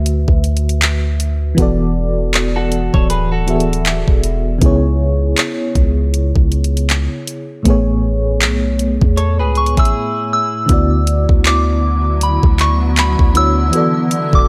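A light reverb and digital ambience frame this smooth, romantic contemporary R&B excerpt, cut from a longer piece and moving at 79 BPM in 4/4 with a 16th-note swing. An FM electric piano with tremolo carries the accompaniment from the start, its mellow tone touched by a faint noise layer, while a deep, sine-like 808-style bass sits up front with long, decaying notes. A trap drum kit with a knocking kick, tape-warm hi-hats and handclaps drives the groove, and the harmony drifts through D6/9, E7sus4, C#m7 and Amaj9. A clean, direct-recorded electric guitar adds picked arpeggios twice, first at 2.6 seconds, dressed in lush chorus and digital delay. At 9.6 seconds a soft, pure synth bell enters with a gentle, warbling, vintage melody high above the band, and a short break arrives near 9.9 seconds. After the chords cycle back to D6/9, a cloudy, evolving granular pad spreads blurred, detuned chords bathed in its own reverb from 11.6 seconds.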